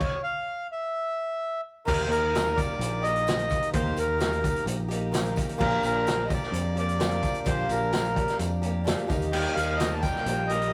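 A rough rehearsal-room recording with warm saturation and a moderate stone-room reverb gives this hopeful, jangly folk rock and heartland rock fragment an earthy, lived-in sound. It opens with a stop: a reedy, up-front accordion carries the melody over a vintage drum kit with dark cymbals, a medium-tuned snare and a punchy kick. At 1.9 seconds the full band enters on an Eb chord, led by a bright, shimmering twelve-string acoustic guitar whose octave-doubled picking gives the track its jangle. A round, dark fingered electric bass anchors the low end, while a very quiet, flute-like tonewheel organ through a rotary speaker holds sustained chords alongside a smooth, deep-voiced concert grand piano, and a close, jingly tambourine adds faint sparkle. The harmony moves to Bb6 and back to Eb, and at 9.3 seconds a slightly broken-up, lo-fi electric guitar through a small old amp slips in with a riff from the background.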